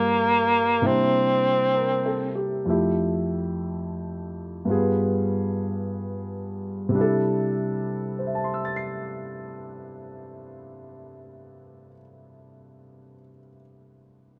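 This short fragment of intimate, late-night jazz opens with a breathy tenor saxophone and a grand piano sounding together, in a slow 4/4 with a swung eighth-note feel. The saxophone carries the melody only briefly, stopping at 2.4 seconds. Its whispered subtone, soft attack, scooped notes and vibrato give it a vintage, up-front presence, and a plate reverb trails behind it. The warm, natural-sounding piano accompanies throughout, spanning a broad register and continuing alone until 14.4 seconds. The harmony moves from Gm7 and C9 through Fmaj7 and G7b9 before settling on C6 at 7.0 seconds, while the pulse slows over the opening stretch. A moderate club reverb places the performance in a club-sized room.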